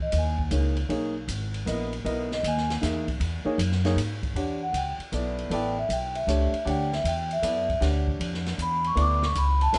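A mellow, ringing vibraphone played with soft mallets and the motor off solos throughout this searching, open modal jazz waltz excerpt, swung in 3/4 over a woody, thumpy pizzicato upright bass with gut strings, a dark, smooth drum kit with boomy kick and dusky cymbals, and a warm grand piano with deep bass that joins at 0.5 s, all lightly touched by reverb as the harmony shifts from Emaj7 to A9sus4 at 4.4 s.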